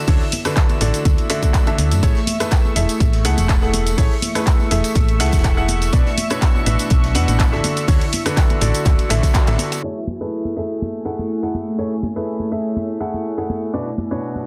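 A bright, woody upright piano riff opens this feel-good piano house excerpt at 123 BPM in A major, over a silky, detuned analog string pad and a deep, moody ambient pad in the background, all three pumping with sidechain and the piano colored by a low-pass filter and digital delay. A punchy electronic kick sits up front with a round, dark FM bass, a house kit of handclaps, bright hats, rim click and shaker, a very quiet jazz kit with dark cymbals and a high-tuned snare, and ringing tambourine and congas. After a band accent at 9.3 seconds, the kick, bass and jazz kit drop out between 9.4 and 9.8 seconds as a filter sweep carries the pads, piano and lighter percussion through the uplifting Amaj7 and Bm changes to the cut.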